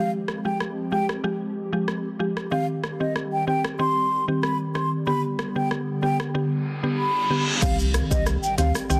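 Dancehall with a tough, hypnotic mood, this short passage is cut from a longer piece. An airy concert flute with vibrato carries the melody up front through a digital delay, while a woody, percussive FM synth pluck with chorus plays the accompaniment beside it. Behind them, a soft, detuned pad holds sustained chords with ensemble chorus and sidechain pumping, moving from Fmadd9 through Cm and G back to Cm. An electronic deep house kit joins at 0.3 seconds with a deep kick, hi-hat, rim click, shaker and crash, its snare softly clipped and its sound re-recorded in a small room. A reverse cymbal sounds from 6.7 seconds and leads into an impact at 7.6 seconds, where a round sine sub bass and acoustic maracas enter for the closing stretch. Light reverb and a dense, heavily limited modern master hold it all together.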